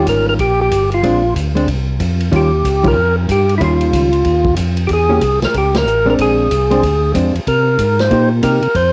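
Greasy and bluesy, this brief excerpt from a longer soul jazz organ trio swings at 187 BPM in 4/4, cut from a single section built over Eb9, Bb9, Edim7 and Cm7 chords. A percussive tonewheel organ carries the melody up front, its fat, lightly overdriven tone marked by third harmonic percussion, vibrato, a slow rotary speaker, cassette tape grit and plate reverb. Beneath it, a second tonewheel organ handles the bass line with a full, clean sound, audible key click, chorus vibrato and its own slow rotary speaker. A hollow-body jazz guitar supplies dark, picked, compressed accompaniment through the same tape coloration, while a vintage acoustic drum kit of hi-hat, ride cymbal, snare and punchy kick sits further back with a natural small-room feel and a rolled-off top. The whole band hits accents at 2.8 and 5.7 seconds, and the moderate studio reverb and home cassette recording give the performance a lived-in, homemade character.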